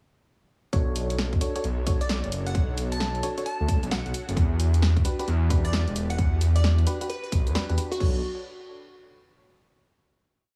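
Heavily compressed into a radio-like sound with small room ambience, this moody, soulful two-step UK garage piece at 132 BPM in B minor swings on a punchy layered electronic kick and a house kit of snare, bright skipping hi-hats, cabasa and crash, under a deep, rumbling detuned saw bass with sidechain pumping, while bell-like FM electric piano stabs with chorus and tape echo move between Bm9 and Em9, a soft, breathy pad warbles in the background from 1.1 seconds, and a crystalline wavetable pluck with a moving notch enters at 2.0 seconds before the piece settles on a final Bm9 chord at 8.0 seconds.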